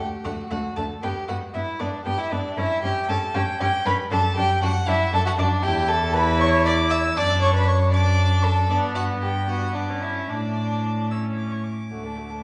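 Cheerful and graceful, this quick classical-period string quartet movement in D major, cut from a longer piece, moves at 78 BPM in a straight 6/8, with a dark, nasal first violin carrying the melody high above a warm second violin line, a distant viola with light vibrato filling in the accompaniment, and an up-front cello whose airy bow anchors the bass, all four gut-string players heard from further back in a reverberant recital hall as the harmony travels from D through G and E minor colours to close on D at 11.9 seconds.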